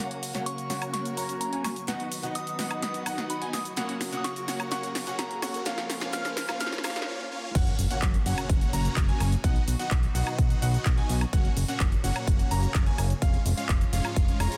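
A picked acoustic guitar, rich chamber strings, a warm grand piano with pumping arpeggios and huge, phased supersaw chords open this triumphant, uplifting festival progressive house excerpt at 127 BPM in F# major, building over a house kit drum fill with filter sweeps, a very quiet riser and a soft, pure FM bell melody, then breaking at 7.1 seconds before the drop at 7.5 seconds brings in a punchy, up-front kick and a fat, tube-saturated analog bass under a dense, heavily limited master.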